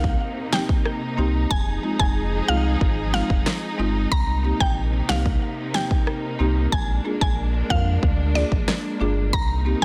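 Sultry and bouncy, this short dancehall cut at 92 BPM in C minor sets a woody, detuned FM synth pluck melody with chorus and tape echo over lush bowed strings and woody marimba, which enters at 0.5 s, both pumping with sidechain, while a deep sine sub bass with octave and a punchy, up-front pop drum kit of kick, fat snare, rim click and handclaps, roughened by vintage 12-bit sampler grit, drive the Cm7, Fm7 and Bb7 changes through a dense, heavily limited mix in a small room.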